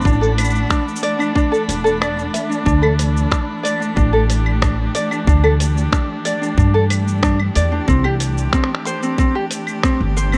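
Delicate and playful, this short folktronica passage at 92 BPM in D mixolydian sets fingerpicked ukulele arpeggios with digital delay up front over a woody pizzicato upright bass, a tight electronic kick, a muffled, pitched-down sampler-style kit of cabasa, claves, finger snaps and hi-hat, and a bowed string quartet with vintage 12-bit grit holding sustained chords from Asus4 to Dsus2 and C. Meanwhile, a faint, reversed granular swell glows through the opening section, carrying on through a break from 2.0 seconds until 2.7 seconds, all in a dark, lightly reverberant production.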